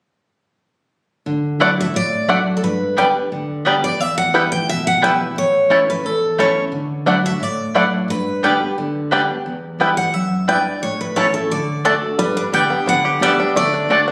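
Bluegrass in D major at a brisk 176 BPM, this lively, virtuosic cut from a longer piece sets a warm, picked dreadnought guitar melody with audible finger squeak over woody mandolin stabs, twangy fingerpicked banjo arpeggios and a second picked guitar whose bright, full-bodied, up-front accompaniment anchors the band, all caught on a phone in a reverberant room as the chords cycle through Dadd9, G, Em and A before shifting at 12.2 seconds.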